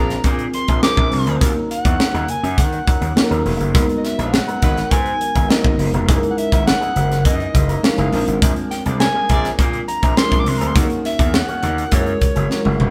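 Polished 1980s jazz-funk pop with a nocturnal, slick mood, cut from a longer piece, where a warm soprano saxophone with vibrato carries the melody over a lush, chorused and tremolo-laden FM electric piano and soft pad, a gritty overdriven slap bass, a crisp up-front fusion kit with a punchy kick and high-tuned snare, a twangy envelope-filtered guitar riff in the background, very quiet congas, and brief distant horn-section phrases, all in a moderate stone-room reverb, with a drum fill from 12.5 seconds closing the excerpt.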